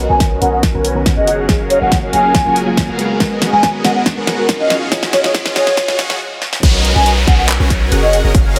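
A mellow, hollow wooden flute carries the melody in this playful, bright future bass excerpt. Its airy tone is shaped by vibrato, rolled-off highs, a digital delay and sidechain pumping. Beneath it, huge detuned supersaw chords pump with lush chorus and a low-pass filter sweep through the build-up. They sit over a half-time groove from a punchy electronic kick and a pop kit with a fat snare, warm hats, handclaps and crash cymbal, both re-recorded in a small room. A deep, sine-based 808-style bass sustains and decays underneath, while a soft, round pluck adds dark, wave-folded accompaniment with subtle chorus and dub echo, and a very quiet shimmering pad drifts in from 0.6 seconds with granular, ethereal sustain. Electronic risers and downlifters sit in the background as drum fills run through the build-up. The pad and pluck stop at 6.2 seconds for a short break, and the drop lands at 6.6 seconds, returning to the opening Bmaj9 chord under light reverb.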